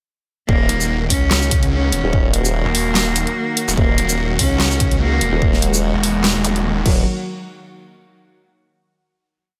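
Aggressive and heavy, this half-time wobble dubstep piece is one long drop in which a saturated formant-sweep wobble bass with changing wobble speed and a growling, distorted saw bass playing chopped phrases sit up front beside a punchy electronic kick and a dubstep kit with a huge snare, hi-hats, shaker, claps and crash, while a single bowed cello plays a smooth repeating riff with vibrato and digital delay, a lush detuned pad with sidechain pumping sits in the background, a very quiet zap arrives at 6.4 seconds, and the drop gives way to a final hit at 7.1 seconds.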